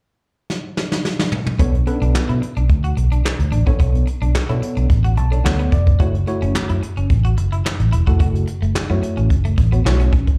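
A dark, round, punchy muted electric bass sits up front in this funky, danceable early-eighties boogie funk excerpt, joining at 1.6 seconds after a brushed drum kit opens with a fill at 0.5 seconds, its boomy kick, hi-hat, toms and handclaps driving a straight groove. A worn, slightly out-of-tune tine electric piano with light overdrive and slapback echo plays accompaniment over Bm9 moving to F#m7, and takes a fill at 4.9 seconds. Meanwhile, a quieter picked electric guitar at the edge of break-up plays a riff through lush chorus, all heard as a live gig through the venue's PA with club reverb.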